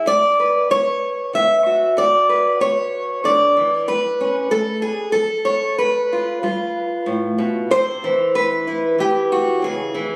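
In 3/4 at 94 BPM with a straight feel, this short folk passage is cut from a longer piece and carries a nostalgic, gentle mood. A single fingerpicked steel-string acoustic guitar plays alone throughout, spanning from G2 up to E5, with a bright, fresh-stringed tone and audible finger squeaks that keep it sounding close and human. The guitar sits up front, and a moderate plate reverb with a three-second tail gives it a concert-hall glow. The harmony moves from Bm/D through F#m and G7 before the passage turns at 7.7 seconds toward a Cmaj7 and then C#m, lending the close a wistful, unsettled color. The sound has the intimacy of a phone recording made in the room, softened by added studio reverb and compression, and it is tuned slightly below standard pitch.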